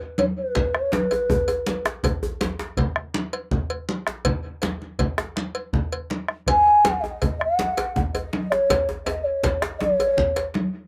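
A straight 12/8 pulse at 108 BPM drives this earthy, festive West African drum ensemble excerpt, where a mellow, airy bass bansuri with a soft attack and slapback echo sings a B major pentatonic melody at the front before falling silent at 1.9 seconds and returning at 6.5 seconds, set over bright, damped hard-hand congas, a dry metallic cowbell, a deep, dark bombo entering at 0.6 seconds, and two djembes, one saturated and soft-handed, the other tight and cracking with metal rattles, all captured outdoors with little reverb.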